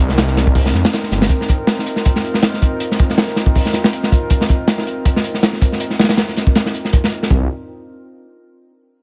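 A warbling, lo-fi pad with chorus and its own reverb opens this dark, nostalgic drum and bass excerpt, holding sustained chords that move from Cm9 to F7sus4, while a thick, beating detuned saw bass sits up front before dropping out at 1.3 seconds. A crunchy, saturated breakbeat kit of kick, snare and hi-hat, gritty with a rolled-off top, carries the jungle feel with a light swing in a small room. The bass returns at 7.3 seconds as the Cm9 chord comes back.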